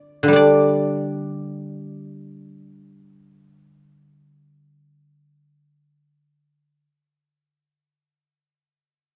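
A solo guzheng, plucked with fingerpicks, carries this brief passage of Chinese traditional music from 0.0 to 6.9 seconds, its silvery, ringing tone placed up front in the mix. The mood is elegant and longing, and the playing moves in free time rather than to a steady pulse. Its acoustic sound is mellow yet detailed, spanning a range from D3 to D5. Close microphones capture the instrument clearly, while a moderate concert hall reverb lets each note bloom in the space. This short section is cut from a longer piece.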